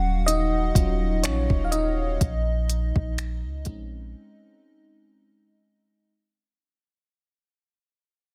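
Dry, dense and heavily limited, this short cut from a longer contemporary R&B piece sits close and up front, fading out across its full length. At a slow 62 BPM in 4/4 with a light sixteenth-note swing, the mood is sensual and longing, moving from Ebm7 to Bbm11. An FM electric piano layered with a soft pad carries the harmony throughout, lush and dreamy with a mellow, chorused shimmer and a noise layer. Beneath it, a soft 808-style bass gives a deep, round, sine-like bottom. A smooth, produced drum kit of finger snaps, crisp hi-hat and a gentle kick enters at 0.3 seconds, with an overdriven, softly clipped edge on the snare. The drums drop out at 3.9 seconds and the bass at 4.1 seconds, leaving the electric piano alone for the closing break.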